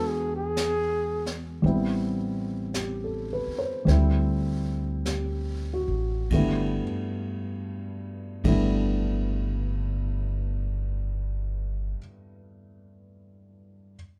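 Jazz ballad in G major with a late-night, tender mood, swinging gently at 47-58 BPM and slowing through its opening seconds as the chords move from E7 through Am9 and D9sus4 to a resting G69. A breathy, whispered flugelhorn with vibrato and scooped notes carries the melody only briefly at the start, while a warm grand piano with audible action noise and a woody, thumpy pizzicato upright bass sit up front in an intimate, moderate studio reverb. Brushes on a small-room kit with dark cymbals, a high-tuned snare and a boomy kick enter at 0.6 seconds and fall away at 8.7 seconds, leaving the bass to continue until 11.9 seconds and the piano to ring on until 14.0 seconds in this fragment of a longer piece.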